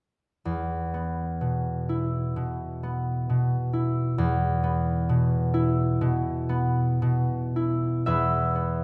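Mysterious and gentle, this short rubato excerpt from a longer classical solo harp piece, in 4/4 at around 53-68 BPM, features a bright, ringing concert harp up front, fingerpicked across a span from E2 to E5 between 0.5 and 8.8 seconds and opening on a high E5, all bathed in a lush scoring-stage reverb that evokes a church or concert hall.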